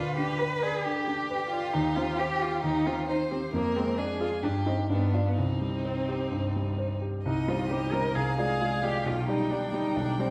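Heard from further back in a wet recital hall, this stormy, restless excerpt of a quick classical-period piano trio movement in C minor moves at 133 BPM with a rubato feel, as a smooth, even violin carries the vibrato-laden melody over a rich, expressive cello second line that sits up front with soft attacks and portamento, while a vintage grand piano with short sustain supplies up-front accompaniment before the music shifts into a new section at 7.3 seconds.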